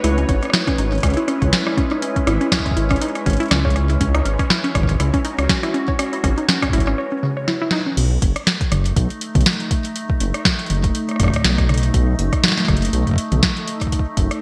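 This excerpt of eerie, intricate IDM at 121 BPM in 4/4 opens with a glassy FM pad holding sustained chords, a warbling, dusty pluck spinning arpeggios, a rumbling detuned saw bass up front with tube saturation, and a booming analog drum machine with metallic hats, a tonal snare, rim clicks, toms and crash under gated reverb and digital delay. At 0.3 seconds a deep electronic kick, re-recorded in a small room, joins, while a very quiet bubbling texture of random resonant filter steps hovers up at C#5 until 7.0 seconds. The 16ths swing gently as the harmony rests on C#m7, and the lo-fi pluck drops out at 7.9 seconds after a break from 7.0 seconds, a drum fill and a band accent at 7.7 seconds. From 8.0 seconds the second section moves to B7, with the ethereal, chorused pad, the beating bass and the drums carrying on. The sound is bright 1980s-style digital production with a moderate plate reverb.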